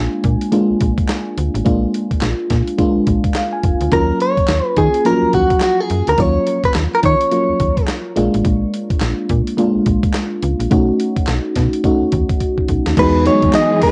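This new jack swing R&B excerpt has a confident, bouncy feel, riding a swung sixteenth-note groove in 4/4. A mellow FM electric piano, soft and round with a dark, chorused and phased sheen, carries the chords from the start, adding a short fill around 3.1 seconds. Beneath it, a slap-like FM bass gives a snappy, metallic attack, while a dusty, sampler-style drum kit enters at 0.2 seconds with a thumpy kick, medium-tuned snare, handclaps, hi-hat and crash, gritty and compressed, with a fill just before 13.0 seconds. A bright, clean, direct-recorded electric guitar picks out the melody from 3.9 to 7.9 seconds and returns at 13.0 seconds, scooped and sitting up front in plate reverb, just as a bowed studio string section arrives with smooth, expressive sustained chords full of vibrato and portamento. The whole excerpt has the hazy, muffled character of a home cassette recording, set in a moderately wet studio reverb.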